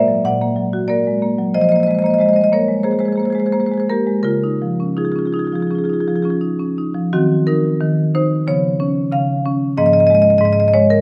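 A solo marimba played with medium hard mallets opens the recording, its tone dark and smooth yet distinctly percussive, sitting up front in the mix. This contemporary classical piece moves in a flexible, rubato 4/4 that gives it a hypnotic, flowing mood as the harmony shifts from an augmented opening chord through Fm11 and Dbadd9. The instrument covers a broad span, from a deep Ab2 up to F#5 at the top. Around 7.1 seconds a second section begins, turning to Ebm6 and Db7 before settling on Absus2 near 9.8 seconds. A moderate recital hall reverb lends the notes a gentle halo, and this short passage is cut from a longer work.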